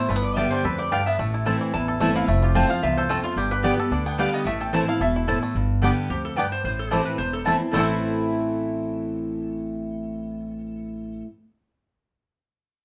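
A fast, straight four-beat pulse drives this rustic, hard-charging bluegrass passage, cut from a longer piece. Twangy banjo played with fingerpicks and a nasal, metallic lap resonator guitar with slide carry the melody together, the resonator sitting higher. Underneath, a bright, full-bodied dreadnought acoustic guitar with fresh strings is picked up front as the loudest part, while a pizzicato upright bass adds growly, thumpy low end. A mellow, double-strung mandolin joins at 0.4 s with woody stabs. The harmony circles through G, A minor and F, with the group heard in a moderate studio room.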